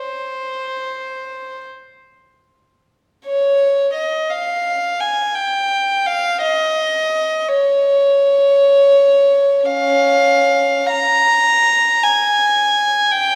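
Mournful and yearning, this classical excerpt for unaccompanied solo violin moves in free, expressive time, tuned to A4 = 441 Hz, with the single bowed line playing alone from 0.0 to 13.4 s across a range from Db4 to Bb5. The violin's tone is warm and pure, played sul tasto with a soft attack and a smooth, floating top. It sits up front, yet a wet scoring-stage reverb with a 1.8 s decay places the listener further back in the room.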